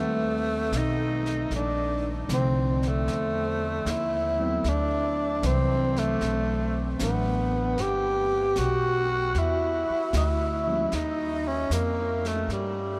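Intimate and romantic, this jazz ballad excerpt drifts at 76 BPM in 4/4 with a gentle swing on the eighth notes, set in a vast, echoing space with a huge ambient reverb. Up front, a growling tenor saxophone carries the melody as a soloist, its breathy subtone, raspy edge and vibrato softened by a mellow, smooth top, with scooped notes and a soft attack. Behind it, a bright, clean tine electric piano comps through rich harmonies such as a rootless F9, Bbmaj9, D13 and Gmaj7 before dropping out at 10.9 seconds as the music settles on Ebadd9. A woody pizzicato upright bass with steel strings anchors the low end throughout. From 0.7 seconds, a jazz drum kit played with brushes adds an airy, polished pulse on a high-tuned snare and hi-hat, sitting softly beneath the others.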